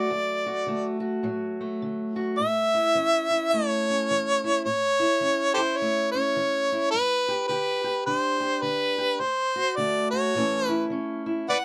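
Acoustic country blues for a small duo, this short cut from a longer piece has a rollicking yet laid-back mood and a swung feel. A warm harmonica carries the melody up front from 0.0 seconds to the end at 11.6 seconds, played in a jazz style with vibrato, tongue slaps and scooped notes. Beneath it, a fingerpicked steel-string acoustic guitar supplies the accompaniment throughout, with a dark, boxy parlour tone sitting lower in the balance. The harmony moves from D to A, then G, before returning to D and A. Close, detailed microphones and very little reverb keep the sound intimate and present.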